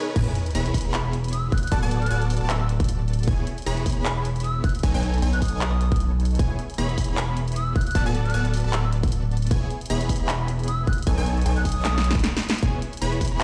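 A deep, saturated sub bass sits up front and pumps against the kick in this bright, lush future bass cut, running at 154 BPM in a swung half-time feel in E major, moving between E6, D6 and B13 chords. A riser and sub drop open the drop at 0.2 seconds, where a punchy layered electronic kick and a big-room kit of snare, handclaps, hi-hat and crash join a detuned sawtooth supersaw stab riff with digital delay and a wave-folded unison pluck arpeggio in the background. A pure, straight-toned concert flute melody enters at 0.9 seconds behind them with delay, and a drum fill leads into a brief break at 12.2 seconds, all heard as if played through a big sound system in a bare stone room.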